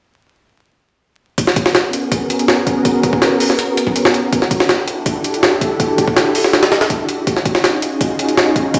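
A jungle sampler-style drum kit drives this raw, frenetic drum and bass excerpt in a straight four, entering at 1.4 seconds with a thumpy kick, a high-tuned snare and hi-hat, each filtered to thin out the low end. The drums sit up front and sound compressed, pitched up and gritty, with a tape-warm edge that suits the sampled jungle style. Beneath them, a soft string machine holds sustained chords in a middle register, its silky, vintage tone built from pulse and sawtooth waves with a slow attack, long release and a warbling ensemble chorus. The harmony moves through G#m11, Em11 and D#m11, giving the fast rhythm a dusky, floating backdrop. The whole mix is bathed in a wet plate reverb and digital ambience, heard as if played over a big sound system in a bare stone room, with vinyl crackle adding grain until the cut ends at 8.8 seconds.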